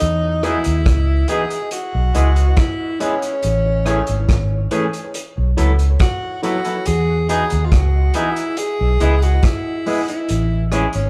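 A slow, straight 70 BPM lovers rock reggae groove in E major is carried by a punchy, up-front vintage drum kit of kick, hi-hat and rim click with a pumping small-room sound, and a dark, round, foam-muted fingered bass sitting low and forward beneath it. Over a tender, sweet progression from Emaj7 through C#m7, Amaj7 and B7sus4, a bright tenor saxophone sings a pop-style vibrato melody with dub echo, while a twangy clean guitar adds stabs with spring reverb from 0.4 seconds. A worn, slightly out-of-tune tine electric piano also enters at 0.4 seconds, with dub echo, in the background of this short cut from a longer piece, all in a live-room feel with moderate studio reverb.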